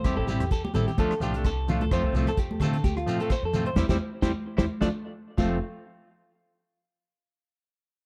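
Highlife guitar band music at 130 BPM with a sunny, swung sixteenth feel, where a twangy, compressed clean electric guitar with spring reverb plays the chords and a second bright picked electric guitar spins arpeggios through subtle chorus and tape echo over a woody, thumpy pizzicato upright bass and a cloth-damped, gritty drum kit with dark cymbals, joined by a grainy, distant shekere and thin-skinned congas in the background, all in a dry, close 1970s-style studio sound as the band accents from 3.8 seconds and a drum fill arrives at 4.7 seconds before the chords break off at 5.6 seconds.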